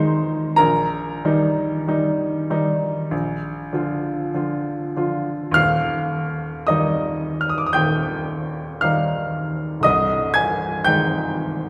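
A bright, woody upright piano sits up front in this serene, nostalgic romantic nocturne, its notes fading quickly as they range from deep C1 to a high Ab6. Played alone in 4/4 with free rubato at a slow 45-60 BPM in Eb major, it moves from Ab through Eb/Bb and Bb before settling on Eb at 5.6 seconds, where a new section begins and later turns to Ab/C at 9.9 seconds. A wet concert hall reverb surrounds the piano's short sustain in this brief passage cut from a longer piece.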